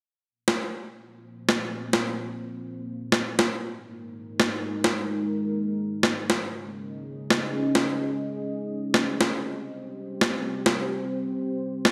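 A lightly swung half-time drum and bass groove opens this tense, cinematic excerpt, with a gritty, pitched-down electronic snare entering at 0.5 seconds, overdriven and up front with gated reverb and the air of a large room. At 1.4 seconds a deep, dark ambient pad arrives, its detuned sawtooth unison and sub octave warbling through chorus as slow-attack chords sustain over a moody progression from Bb5 through Dbsus2 to C5. A lush hall reverb and bright 1980s-style digital sheen frame the whole passage.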